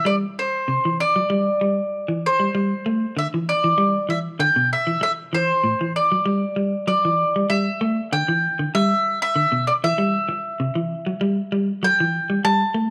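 Defiant and hypnotic, this lightly swung afrobeat excerpt pairs a woody, double-strung picked mandolin melody with clean, picked electric guitar arpeggios low in the register, both up front in a small room wrapped in moderate echo-chamber reverb, shifting into a second section at 7.5 seconds.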